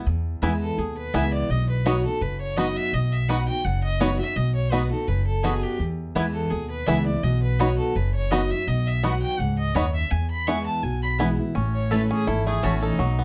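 A woody, growly upright bass sits up front, plucked with a steel-string bite and anchoring this driving, virtuosic bluegrass passage cut from a longer piece. A bright, full-bodied jumbo acoustic guitar picks the accompaniment on fresh strings, while a twangy, percussive banjo rolls out arpeggios with fingerpicks. The mandolin enters at 0.4 s with picked double-string stabs, and a clear, focused fiddle takes the bowed melody from 0.6 s, colored by light vibrato. The harmony swings between E and B before moving to A as a new section begins at 11.6 s. Light reverb and a dark, warm production frame the ensemble.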